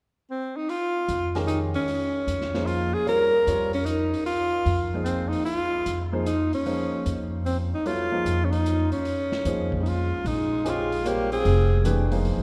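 A long, wet cathedral reverb surrounds this short cut of modal jazz, giving it the air of a church or concert hall. A clear alto saxophone carries the melody up front from the opening moments, its scooped notes delivered in a jazz solo style over a single Bbm9 chord in a swinging three-beat metre. A woody, growly upright bass sits close with plucked steel strings, while a grand piano with a natural tone supplies the accompaniment. The vintage drum kit sounds muffled and lo-fi, with a punchy kick, a medium-tuned snare and hi-hat, its top end rolled off as if heard in a small room. Near 9.8 seconds a close-miked tenor saxophone joins as a second line with a soft attack and vibrato, keeping the mood hypnotic and intense.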